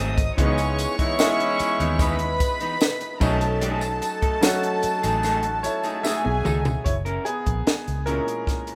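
Lush 1970s-style soul at a smooth, silky 74 BPM, where a soft-attack violin section with slapback echo floats over clear grand piano, a dark, round foam-muted bass, a slightly broken-up guitar riff bathed in spring reverb, a dry cocktail kit with a punchy kick, a jingly tambourine and tight horn stabs between 0.4 and 2.4 seconds, before a drum fill hands off to a piano solo at 6.9 seconds in this rough, roomy demo cut from a longer piece.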